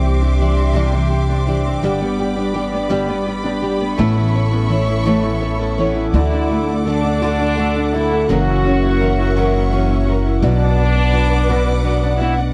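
A slow, straight six-eight lilt at 56 BPM, counted in dotted quarters, carries this tender, romantic pop ballad in D major, an excerpt cut from a longer piece. A double-tracked, fingerpicked nylon-string guitar plays the accompaniment throughout. Beneath it, a full-bodied jumbo steel-string acoustic guitar picks arpeggios, and a woody, thumpy pizzicato upright bass sits up front. A lush, bowed studio string section holds sustained chords with vibrato high above. At 6.1 seconds a muted French horn section enters with a nasal, metallic second line that sounds distant and roomy, as the harmony moves from Cadd9, G and Aadd9 onto D, F#7 and Bm. The sound is a dry, close 1970s-style studio recording with little reverb.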